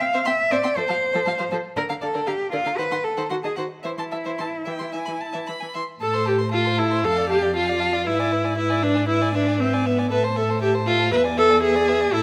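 A light reverb surrounds this brief cut from a quick classical-period movement for string quartet in A minor, moving at 118 BPM in 4/4 with a rubato feel and a restless, stormy mood. All four bowed players sound throughout the 12.2 seconds, with the rich, focused viola and the focused cello set up front, the viola the most prominent part. The first violin carries the melody between C5 and C6 with a smooth, even tone and vibrato, while the second violin, rich yet distant, traces a second line from A4 to C6. The viola supplies accompaniment from D3 to B4, and the cello anchors the bass with a warm tone, a smooth top and vibrato, ranging from E2 as high as F5. The harmony moves through C, F, Bb/D and a D#dim before settling on Am/E, and from 6.0 seconds a new section turns on Am, Dm/F and E7/G#, closing on E7.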